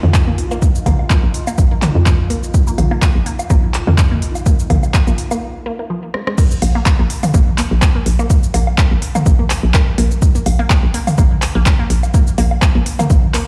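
Minimal techno at 125 BPM in 4/4 with a light swing on the sixteenths, quirky and sparse in mood, cut from a longer piece and centred on Bb. An overdriven, punchy analog kick sits up front, joined by a clicky minimal kit of hi-hat, rim click, handclaps, cabasa and crash, and by layered electronic toms and woodblock carrying delay. A hollow, bouncy FM bass knocks between Bb1 and F2 with a sidechain pump, while a squelchy, resonant blip pluck built from detuned pulse and sawtooth waves runs through phaser, cassette-tape colour and dub echo. In the background, a bubbling texture of random filter steps with chorus and its own reverb drifts until 5.4 seconds, when a short break clears space for a drum fill at 6.1 seconds. The drop lands at 6.4 seconds and carries the groove to the end. The drums ring out in the natural reverb of a large, bare room, while the mix itself stays dry and loud.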